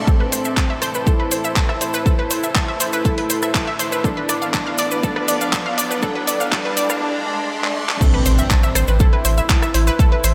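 Melodic techno with a dark, dramatic mood, this excerpt builds over a background riser while a warbling, vintage analog drone and a bowed chamber string section, both pumping with the sidechain, sit underneath until 7.0 seconds. A smooth, detuned supersaw carries the melody through diffuse delay, a bright sawtooth pluck spins tape-tinged arpeggios, and a punchy, up-front electronic kick joins grainy cabasa and a filtered house kit of hi-hat, rim click, handclaps and crash cymbal. A drum fill leads into the drop and impact at 8.0 seconds, where a deep, nasal analog bass enters at 8.3 seconds, all soaked in a dreamy cathedral reverb.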